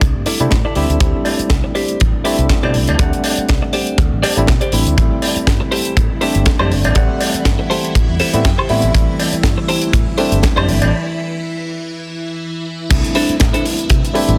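Sensual and cosmic, this nu-disco excerpt rides a lightly swung groove, cut from a longer piece. A dark, punchy kick with a big-room feel anchors a dry, tight funk kit of hi-hat, high-tuned snare, crash and woodblock, while a distant cowbell colours the beat from 1.2 to 10.9 seconds. Underneath, a bright, amped fingered bass with an envelope filter holds the low end as a barky tine electric piano plays chords through sidechain pumping and delay. A clean, picked semi-hollow guitar plays a compressed riff bathed in lush chorus, low-pass filtering and delay, with a filter sweep running across it and a short fill at 8.2 seconds. From 5.0 seconds a vintage string machine adds soft, sustained sawtooth chords with a sub octave, phaser, ensemble chorus and sidechain pumping. After a break, the arrangement drops back in at 12.9 seconds, all set in a small room ambience.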